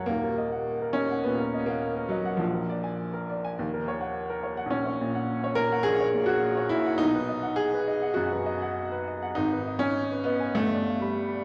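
A clear, woody upright piano sits up front with long sustain in this passionate romantic character piece, played solo with rubato at around 103 BPM in 4/4, moving from D#m through A#7 before settling into B major from 4.7 s and reaching G7 by 10.6 s, all bathed in a wet scoring-stage reverb and the warbly pitch drift of worn old cassette tape, in a short cut from a longer work.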